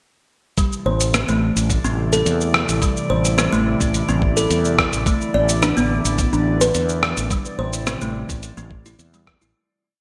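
A mystical, earthy organic downtempo groove at 107 BPM opens at 0.6 seconds with a woody kalimba arpeggio under delay, an airy, breathy pad with chorus and sidechain pumping, a dusty, gritty sampler-style kit of closed hat, rim click and shaker with gated reverb, and a soft, thumpy electronic kick, moving from C6/A through E7sus4/A to Am7. A growly fretless electric bass in a dotted rhythm sits up front from 0.9 seconds, while a glassy held high note with drifting overtones hovers in the background. The sound is bright and 1980s-style digital, with a lush hall reverb, and the piece fades out from 6.6 seconds to its close at 9.6 seconds.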